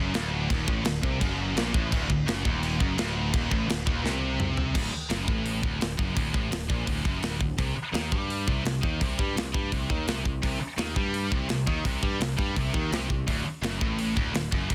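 A dense, heavily limited modern master puts a saturated, gritty drum kit up front, with a tight kick and a medium-tuned snare set in a studio room with a rolled-off top. This is a relentless, aggressive heavy metal cut from a longer piece, driving at 169 BPM in a straight 4/4 and rooted in D phrygian dominant. Two scooped high-gain guitars play distorted, picked riffs throughout, one of them sitting in the background, while a double-tracked heavy high-gain guitar adds its own riff in the background from the start to 4.7 seconds and returns at 10.4 seconds. Underneath, a growly, punchy picked electric bass with a direct sound carries the low end, and the drums work crash cymbal, hi-hat, kick, snare and toms, closing the opening passage with a fill from 4.0 to 4.7 seconds. The harmony sits on D, moves to a C power chord at 7.6 seconds, and lands back on D at 13.3 seconds.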